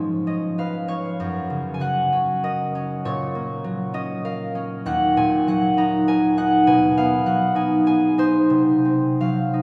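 A concert harp opens alone, bright and ringing, its fingerpicked notes placed up front in a very wet cathedral reverb whose long tail lingers for about 4.3 seconds. This is a short classical fragment for solo harp, cut from a longer piece, with a dreamy, serene mood. The playing moves in a lilting three-beat metre, but the beats are uneven and the pulse bends freely with rubato. The harmony drifts from a C#7 over G# to F#, then through D#m and G#m7 over B before settling on a Cdim near 8.5 seconds. The harp ranges from a deep D#2 up to A#5, and the resonant space gives the whole 9.6 seconds a floating glow.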